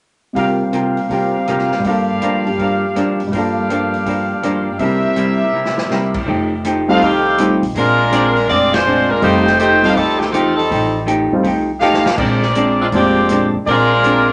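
A compact club reverb gives this brassy, swinging big band excerpt a close, slightly dark sound with a softened top end. At 162 BPM in 4/4 with a swung eighth-note feel in F mixolydian, it opens with mellow grand piano and a clean, hollow-body archtop guitar comping beneath up-front trumpet stabs that ring clear with light vibrato and a soft attack. A vintage kit sits lower in the mix, its dark cymbals, medium-tuned snare and punchy kick played with ride, hi-hat, rim clicks and crashes, and it brings short fills at 5.5 and 11.8 seconds. At 6.3 seconds the harmony moves from suspended and minor chords onto F9 and Bb9 as a woody, growly pizzicato upright bass enters, and at 6.9 seconds an edgy saxophone section takes the melody, loudest in the mix and full of vibrato. A band accent at 8.7 seconds punctuates the second half, which carries the full ensemble to the end.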